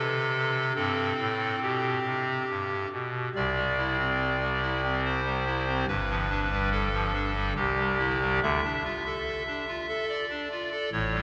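A long cathedral reverb, nearly five seconds of decay, surrounds a solo pipe organ voiced on a hollow clarinet reed stop, placed up front with audible chiff, a tremulant and a baroque character. This reverent, serene chorale-style passage in C major moves at 71 BPM in a straight 3/4, its harmony settling on C and G before a G7 resolves home and the phrase turns toward D minor. An opening statement gives way to a second phrase at 3.4 seconds, and the recording is cut from a longer piece, ending at 11.2 seconds.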